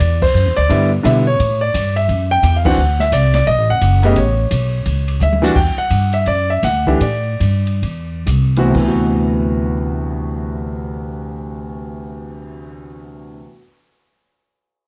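A concert grand piano carries the melody in this sophisticated, swinging jazz trio fragment, cut from a longer piece. Its tone is natural and up front, with deep bass and a cassette-tape coloring. An upright bass played pizzicato sits beside it, woody and thumpy on steel strings, thickened by tube saturation. An open, airy acoustic drum kit with dark cymbals, a medium-tuned snare and a boomy kick adds hi-hat, ride, crash, cymbal swells and toms, heard through the same tape tint in a small room. The music moves in 4/4 in D mixolydian at a tempo ranging from 120 to 173 BPM, swung at 62% on the eighths, over chords such as Em7, Csus2 and Aadd9. The band hits accents early on, a drum fill at 5.2 seconds leads into a stretch that slows down from 5.6 to 8.7 seconds, and a D13 chord opens the closing passage. The whole trio sits in a studio ambience with the feel of a home cassette recording.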